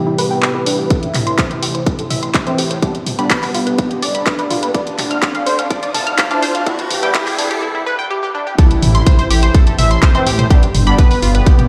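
A steady, straight 4/4 pulse at 125 BPM drives this dark, hypnotic melodic techno excerpt in A minor, where a punchy, tape-warm kick entering at 0.9 seconds anchors an analog drum machine's handclaps, hi-hat and toms, a menacing, saturated detuned saw bass, tight, driving chorused arpeggios with digital delay, a fat lead with phaser and dub echo, a bright, resonant evolving pad, a faint nasal drone that ends at 7.6 seconds, edgy oscillator-sync polysynth stabs and a very quiet riser and impact, as filter sweeps build through a brief break into the drop at 8.6 seconds, with the bass, lead, pad, arpeggios and stabs pumping against the kick in a large, reverberant space.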